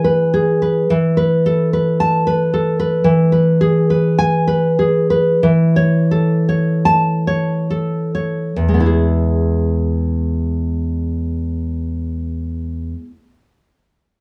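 A lone nylon-string guitar opens on an E major chord, sounding dark, full-bodied and up front in a small room with moderate reverb. This romantic solo classical guitar piece moves in a slow, rubato 2/4, somewhere between 34 and 57 BPM, with a sunny yet tender mood. Fingerpicked lines span from the low E2 bass up to A5, and the occasional finger squeak keeps the deep classical tone intimate and close. The harmony rests on E, leans into an Esus4 and returns to E, then shifts to A over an E bass while the pace slows from 2.0 to 8.6 seconds. At 8.6 seconds a new passage begins back on E, and the guitar plays on until 13.2 seconds, where this section of a longer piece is cut off.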